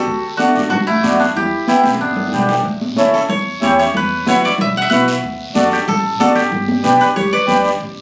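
Cumbia in a joyful, danceable mood, this brief cut from a longer piece puts a dry, fingerpicked koto melody up front over a full, reedy accordion, with a breathy, subtone clarinet line drifting through the opening 2.4 seconds, pizzicato upright bass, bright high-tuned congas and a raspy guiro, all heard as if captured on a phone amid club ambience.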